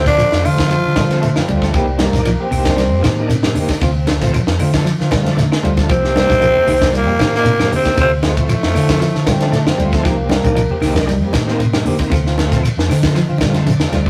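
This hypnotic, funky afrobeat excerpt opens with a growling, raspy tenor saxophone carrying the melody up front, shadowed by a very quiet, breathy trombone on a second line. Beneath them sit an amped, fingered electric bass and two guitars in the background: one at the edge of break-up picking dark arpeggios, the other clean, playing stabs through tremolo. Almost at once a tight funk kit with a high-tuned snare joins in, along with a grainy shekere, very quiet woody claves and soft, thin-skinned congas. A bright tonewheel organ also enters, shouting through a slow rotary speaker with overdrive and chorus vibrato. At 116 BPM in a straight 4/4, the groove moves between Dm7 and Cm7, while a distant, cup-muted trombone section adds a veiled second line, and the lead horns return at 5.9 seconds after a drum fill. Near the end the organ and drums both fill, and the whole take has a rough rehearsal-room sound with tube saturation and a wet studio reverb.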